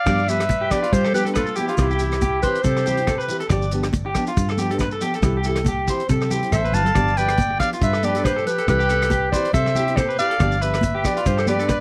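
A forceful, up-front clarinet carries the melody in this sunny, danceable highlife guitar band excerpt, with scooped notes and jazz-style vibrato, while a raspy, growling trumpet plays a second line beneath it; both drop out at 3.3 seconds and return at 6.5 seconds, as a drum fill kicks in. Underneath, a dark, fingerpicked nylon-string guitar supplies accompaniment, and a twangy, slightly broken-up electric guitar plays arpeggios through tape echo. A round, foam-muted fingered bass, a dry soul drum kit with a punchy kick and rim clicks, soft-handed high-tuned congas and a grainy shekere complete the swinging groove in a close, 1970s-style small-room sound.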